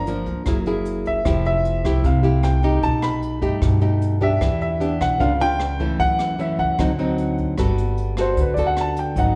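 Sophisticated and romantic, this short bossa nova fragment sets an up-front grand piano melody over fingerpicked classical nylon-string guitar, woody, thumpy pizzicato upright bass on gut strings and an airy, polished brush kit with boomy kick, hi-hat and rim click, moving through rich chords such as Fmaj9, B7alt and Gmaj9 before the piano takes a solo at 7.6 s, with the ensemble heard in the resonant reverb of a church or concert hall.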